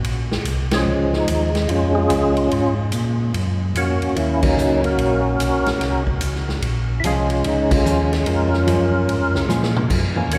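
Drenched in a cavernous cathedral reverb, this smoky, soulful soul jazz organ trio excerpt swings in Bb minor at 146 BPM: a round, mellow tonewheel organ carries the bass through slow rotary speaker and chorus vibrato, and a natural big-room drum kit with a punchy kick and medium-tuned snare marks band accents and plays a fill near 9.5 seconds. A fat, up-front percussive organ melody with key click and third harmonic percussion enters at 0.7 seconds, and a dark, compressed hollow-body jazz guitar slips in behind from 7.0 seconds, all over Bbm7 and Ebm7 chords.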